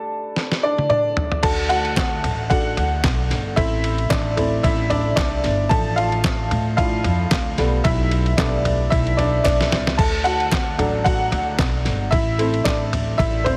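Heavily compressed with a radio-like sound and light studio reverb, this driving, bittersweet piano-driven pop excerpt at 112 BPM in 4/4 with a gentle 16th-note swing opens on a bright, slightly detuned upright piano that carries the lead, while a muffled, pitched-down sampler-style drum kit with a thumpy kick enters with a fill at 0.4 seconds, a woody pizzicato upright bass joins at 1.4 seconds, and crisp group handclaps sit in the background from 2.0 seconds as the chords move from Gsus2 through D, Am and Gadd9/B.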